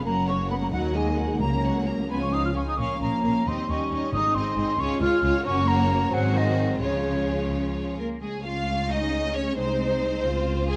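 Bowed violins carry the melody with a rich, focused tone, vibrato and a smooth top, setting a cheerful, graceful mood in this quick classical-period movement for symphony orchestra, heard as a short cut from a longer piece in 6/8 at 88 dotted-quarter beats per minute in Db major, with a rubato feel. A distant silver flute sings a pure, expressive second line with crisp attack until 7.5 seconds, while a second violin section adds portamento in the background. Dark, soft-edged violas fill the accompaniment, and mellow French horns hold sustained chords until 8.0 seconds. Lush cellos and distant double basses anchor the bass, and very quiet, dry timpani struck with hard mallets sound briefly, first at 1.4 seconds. Moderate concert hall reverb surrounds close, detailed microphones, and the harmony settles back on Db at the close of the brief second section.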